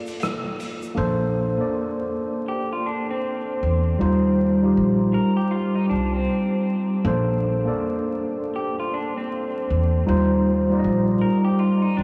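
A clean tine electric piano sits up front through cassette-tape haze in this mellow, dreamy lo-fi hip hop excerpt, opening with a brief break where a raw garage kit's hi-hat and rim click and a grainy, background tube shaker sound only within the first second; a woody, thumpy pizzicato upright bass then enters at 1 second, and a slightly broken-up, compressed electric guitar joins at 2.5 seconds through a low-pass filter and analog delay, the whole mix soaked in huge ambient reverb and vinyl crackle over a swung feel and lush major-seventh and ninth harmonies.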